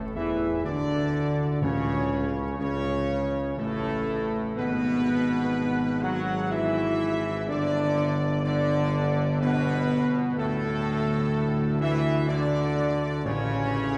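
A warm, up-front tuba anchors this solemn, majestic classical brass chorale, carrying the bass line with light vibrato at a stately 62 BPM in 3/4 and D major. Above it, a trumpet section with a smooth top sings the melody, while a mellow, close-miked French horn section and a bright, tight trombone section hold sustained chords, all three sections touched with light vibrato. Very quiet timpani with medium mallets sound close and dry, playing only in the opening three seconds and again from 13.3 seconds. The harmony moves from Dsus2/A through A/C#, E/G# and G to D5 before arriving on A. The whole ensemble sits further back in a church acoustic with a long, wet reverb, overlaid with vinyl crackle, and the passage is cut from a longer piece.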